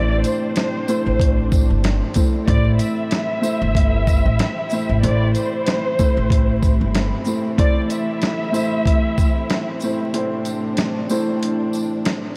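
A dark, moody boom-bap hip-hop excerpt at 94 BPM in A minor opens on a single A minor chord, with a lush bowed violin section carrying a vibrato-laden, portamento melody through delay over a boxy, mellow baby grand piano tinged with cassette-tape grit, smooth sustained strings, a woody pizzicato upright bass that drops out at 7.1 seconds, a gritty, thumpy sampler-style kit with shaker and hi-hat swung on the sixteenths, and a faint jingly tambourine, all bathed in dreamy hall reverb and vinyl crackle until a break at 10.1 seconds where the violins fall away and the kick is muted from 11.4 seconds.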